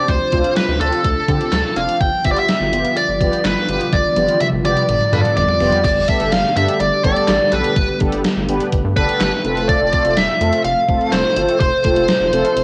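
Driving and melancholic, this synth-pop excerpt moves in a straight 4/4 pulse and carries the worn, lo-fi character of a home recording on cassette, set in a moderate spring reverb. A bright, smooth overdriven lead guitar sits up front carrying the melody, while mellow synth brass, round and detuned with chorus, fills in the accompaniment beneath it. Dark string machine cellos hold sustained chords in the background with a full-bodied, vintage ensemble chorus, and a rubbery square bass bounces along with a hollow, filter-plucked tone. A gated 80s digital drum machine drives the track with a thumpy kick, gated reverb snare, handclaps, hi-hat, toms and crash cymbal, and a drum fill runs from 3.9 to 5.8 seconds, leading into a new section. The harmony moves from Dm7 and G7 to Gadd9 and then settles on F near the close.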